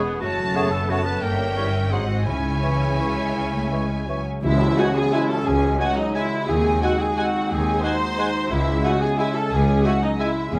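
In a rubato 3/4 lilt moving between 159 and 191 BPM, this dark, sweeping orchestral ballroom waltz in C# minor unfolds as a passage cut from a longer piece. A distant, lush studio violin section carries the expressive melody with vibrato high in its range. A smooth, even symphonic violin section, a bright clarinet, a mellow, hollow silver flute and a warm oboe weave second lines around it. Rich violas, a background bassoon and a tight French horn section holding sustained chords fill the middle, while a clear, focused cello section and a woody, close double bass section anchor the bass. A very quiet, ringing harp adds fingerpicked arpeggios. At 4.4 s the band accents the restatement of the opening theme as a hushed, close tam-tam sounds until 5.8 s, and the harmony passes through F#m, Gdim7 and G#7 before settling on C#m, all in a moderate recital hall reverb.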